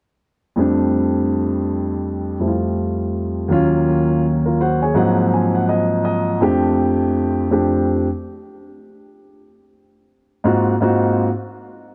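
A dark, mellow baby grand piano plays alone from 0.6 to 11.3 seconds in this smooth, unhurried hip hop excerpt at 82 BPM with a 16th-note swing, its long-sustained vintage chords moving through F69, Ebm7 and Ab13 and sitting up front in light reverb under a worn, warbling cassette-tape drift, with a fill arriving at 4.2 seconds before the chords return.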